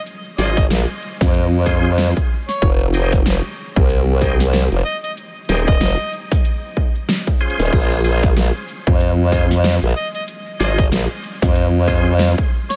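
This gritty, funky glitch hop piece rides a swung sixteenth-note groove in 4/4. A distorted, layered electronic kick sits up front beside a dubstep drum kit of huge snare, metallic hi-hats and crash cymbal, both set in a small room ambience. The formant-sweep wobble bass dominates the low end with a pulse-and-sine tone, thickened by chorus and tube saturation and given a sustained, compressed body. A percussive tonewheel organ plays full, lightly overdriven stabs with key click and third harmonic percussion, spun through a fast rotary speaker, pumped by sidechain and trailed by diffuse ambient delay. Above, a warm harmonica carries a classical-style solo melody with light vibrato and a smooth top, sitting back in the mix under its own diffuse delay; it drops out at 6.1 seconds and returns at 10.0 seconds. The harmony moves from a rootless Bbm9 to Fm7, and a drum fill at 7.4 seconds leads back to Bbm9.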